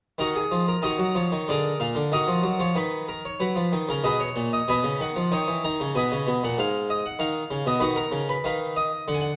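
A close-miked, brilliant French-style harpsichord with plucked octave strings plays alone from 0.2 seconds in this solemn, flowing fragment of a baroque-style suite movement in triple metre, its rubato phrasing sitting up front in a moderate recital-hall reverb under a dark, warm production.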